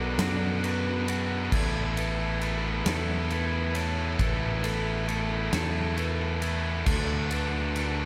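Cinematic and soaring, this slow post-rock passage in 6/8 at 45 BPM, cut from a longer piece, moves from Bm to Asus2 and then D at 6.9 s, with a bright, up-front distorted guitar riff and a growly, punchy picked bass playing alongside a huge arena drum kit's fat snare, punchy kick, crash and ride, while a clean, compressed twelve-string electric guitar arpeggiates through spring reverb, digital delay and slapback echo until 1.5 s, and a metallic, ringing vibraphone played with hard mallets and fast motor vibrato sends delayed arpeggios from the background, all set in a big arena sound with concert hall reverb.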